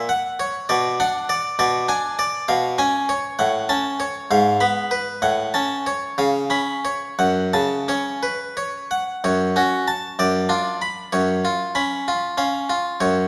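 Flowing and serene, this excerpt of a baroque-style suite movement in F# minor moves in a lilting 6/8 at roughly 57-68 BPM in dotted quarters, with a gently rubato feel. A solo harpsichord, bright and airy with the plucked bite of a single-strung Italian-style instrument, sits up front and ranges from F#2 to Cb6, bathed in a lush scoring-stage reverb with a 1.9-second tail. Its opening phrase leans through Bm and C#7 colours before settling on F#m at 7.2 seconds, and a second section begins at 9.2 seconds, touching Bdim and C#7 over an F# bass.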